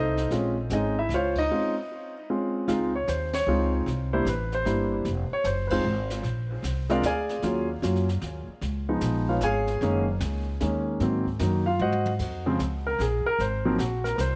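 A moody, swinging jazz piano trio excerpt in 3/4 at 152 BPM in Db major, with a concert grand piano carrying the melody with deep bass and a touch of tape echo over a woody, pizzicato upright bass, both up front, while a brushed drum kit with dark cymbals, a high-tuned snare and a boomy kick sits lower in the mix from 0.2 seconds. Band accents land at 1.3, 3.3 and 5.7 seconds around a break, and the chords move from Bbm9 through Dbmaj7, C7, Ebm7 and Gb69 to Ab7. After a drum fill, the piano takes a solo from 12.2 seconds over Bbm7 and Ab9, all in light reverb and small room ambience.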